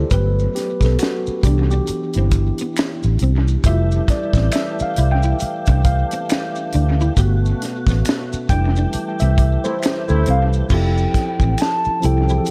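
R&B and neo-soul groove with a relaxed, smooth swing, built around a mellow tine electric piano with analog delay that carries a solo through the first 10.7 seconds over a dark, foam-muted fingered bass, a tight funk kit with a high-tuned snare, a clean picked electric guitar in the background and background maracas and finger snaps. A lightly overdriven tonewheel organ with slow rotary speaker holds sustained chords from 3.6 seconds, and a distant, roomy trombone section adds brief stabs during a band accent. A hollow, woody clarinet-like synth lead takes the melody near the end of this echo-heavy, small-room excerpt, which is cut from a longer piece.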